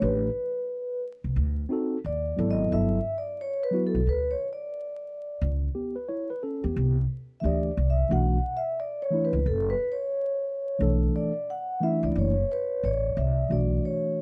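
A dry, close 1970s-style studio sound with small room ambience and vinyl crackle frames this smoky, cool swung jazz-hop excerpt, cut from a longer piece. A soft-mallet vibraphone, metallic and ringing with a slow motor vibrato, carries the melody as a solo over a mellow, clean tine electric piano providing the accompaniment. A woody, growly pizzicato upright bass sits up front beneath them and drops out at 13.8 seconds, just before the other parts end at 14.2.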